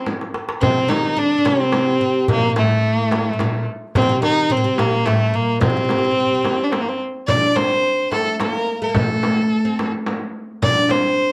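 A single bowed violin leads up front in this soulful, hypnotic Arabic maqam ensemble piece at 108 BPM in 3/4, singing a smooth, vibrato-rich melody with a plate reverb sheen, tuned to A4 = 438 Hz. A crisp metal-shell darbuka played with soft hands and a small, bright frame drum that sits distant in the mix enter together at 0.1 seconds, with a short drum fill running to 0.6 seconds, while a woody, fretless oud plucked with a plectrum adds a deep second line beneath. The music shifts into a new section at 7.3 seconds, all held in a dark, warm small-room production, cut from a longer piece.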